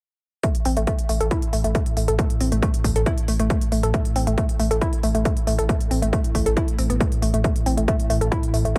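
A heavy, tape-warm kick and smooth hi-hats open this driving, industrial peak-time techno cut in A minor at 137 BPM, entering together at 0.4 s with an up-front, woody wave-folded pluck riff roughened with overdrive, 12-bit sampler grit, chorus, digital delay and sidechain pumping. A thick, saturated sub bass on A1 arrives at 0.7 s, low-pass filtered and pumping, and a deep, moody ambient pad drones on A2 in the background from 1.5 s, its slow attack and long release soaked in chorus and its own reverb. The mix stays dry and close overall, with the kick sitting out front.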